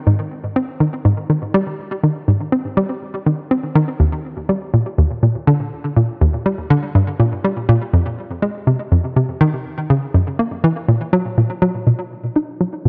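A light reverb gives this brief ambient excerpt a cosmic, luminous glow, set in Ab lydian at 122 BPM in a straight 4/4. A single square-wave pluck plays alone from 0.1 s to 12.9 s, hollow and bouncy, with a fast attack, short decay and a noise layer. Chorus and tape echo coat the pluck, which sits up front across a span from Eb2 to D#4, and the music shifts into a new section at 11.9 s.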